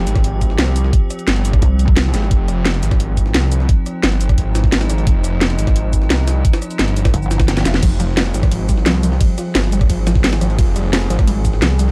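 Mechanical and dark, this excerpt of technical drum and bass at 174 BPM in F minor rides a thick, detuned saw bass with tube saturation and an eerie, metallic FM drone holding sustained chords, both pumping under an up-front, knocking electronic kick and a layered kit of cracking snare, bright hats, ride, crash, rim click and shaker, with a very quiet, gritty, pitched-up jungle sampler kit tucked beneath, while a heavy, pulsing pluck wobble bass bursts in briefly at 1.6 s and again at 7.1 s, running through a drum fill at 7.5 s, and a lo-fi, warbling pluck with dub echo arpeggiates in the background from 7.8 s.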